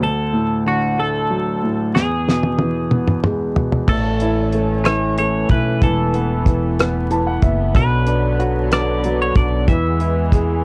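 A swaying 6/8 pulse at 62 BPM, counted in dotted quarters, carries this heartfelt pop ballad in A major, cut from a longer piece. A clear, open concert grand piano with deep bass sits up front from the start, while a bright, twangy twelve-string electric guitar picks a clean, compressed melody, moving between D and E chords. The dry, damped 70s drum kit joins at 2.0 seconds with a fill, its fat snare and tight kick placed close alongside crash, hi-hat, rim click and toms. At 3.9 seconds the harmony lands on A, and a woody, dark pizzicato upright bass with transformer saturation enters together with a warm studio string section holding bowed chords with light vibrato and a reedy, gut-string period tone. The piano adds a short fill around 7 seconds as the chords pass through Esus4, Bm and E, all under light reverb and a worn cassette patina of vinyl crackle and warbly pitch drift.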